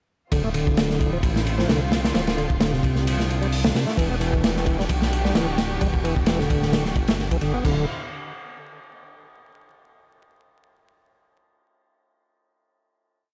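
A crunchy, gritty breakbeat kit sits up front with a tight kick, medium-tuned snare, dark cymbals and a rolled-off top, driving a funky, swaggering breakbeat groove with a light swing and edited loops. A reedy, lightly overdriven tonewheel organ repeats a 32-step riff through fast rotary speaker, chorus vibrato, key click, analog delay and sampler grit, while a deep, rumbling detuned saw bass with tube saturation glides between long notes and a veiled, muted string section holds sustained chords that pump against the beat. The kit drops out at 7.7 seconds, leaving a final Dm9 chord from 7.6 seconds in a dry small room with transformer saturation and vinyl crackle.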